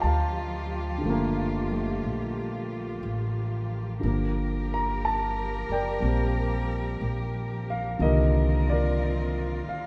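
An up-front concert grand piano anchors this smoky, intimate jazz ballad, its deep bass and long sustain carrying the accompaniment while the noise of its action stays audible beneath the notes. Close beside it, an upright bass plays pizzicato on steel strings with a woody, warm tone. Lower in the mix, a cello section holds bowed, lush chords with focused vibrato, adding a rich ensemble glow to the swung feel. The harmony moves from Gm9 to Gm7 and then Cm11, with the opening section returning at 4.0 seconds. A moderate large studio reverb surrounds the trio in this excerpt, cut from a longer piece and running about 9.9 seconds.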